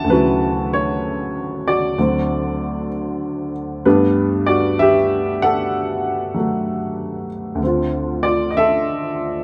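This solo jazz piece, cut from a longer performance, has a sophisticated, swinging mood at a slow 64 BPM in 4/4, with a 67% swing on the eighth notes. An upright piano plays alone for the full 9.4 seconds, covering a span from D2 up to A5. The instrument sounds woody and intimate, a little detuned, with its action noise clearly audible, and it sits up front with a natural character. The harmony opens on Dmaj9 and moves to D7, then settles into G major at 3.8 seconds with Gmaj9 before turning to Dm7. A moderate studio reverb gives the sound a sense of the room, as if captured live.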